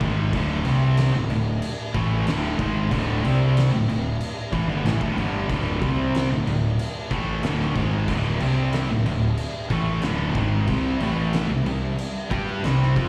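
Heard through a live venue's PA with recital-hall reverb and vinyl crackle, this heavy, ominous stoner and doom metal excerpt at 93 BPM sets two dark fuzz guitars, one very quiet and one in the background, beside a bright, double-tracked distorted guitar with slapback echo, all riffing from D5 to C5 at 10.7 seconds over a growly, punchy overdriven fingered bass and an oversized low-tuned drum kit with a boomy kick, fat snare and dark crash cymbals in a pumping stone room.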